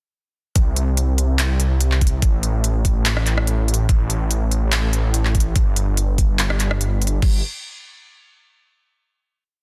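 A euphoric, bright future bass piece at 144 BPM in 4/4 launches straight into a half-time drop at 0.6 seconds, where a knocking, up-front electronic kick and a tape-warm trap kit of crisp closed hats with rolls, handclaps, rim clicks and crash drive lightly swung 16ths beside a thick, saturated, detuned sawtooth bass with chorus and sidechain pumping that follows the chord rhythm, set in a dense, heavily limited digital ambience before a final note from 7.2 seconds.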